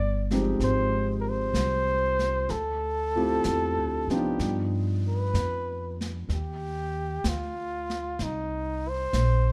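Swung eighth notes at a slow 63 BPM in 4/4 set an unhurried jazz ballad pulse, intimate and romantic in mood and lifted from a longer piece. A mellow, close-miked flugelhorn carries the solo melody up front with vibrato, while a woody, thumpy pizzicato upright bass sits beside it, both sounding from the first moment. A warm grand piano comps from 0.3 s, its natural tone carrying audible action noise, and it drops out at 6.3 s. A brushed drum kit with a medium-tuned snare and hi-hat enters at 0.3 s and stays low in the mix beneath the other parts. The harmony moves from Fm7 through Dm11 and G7b13 to Cm11, and a moderate large-studio reverb wraps the dark, warm production.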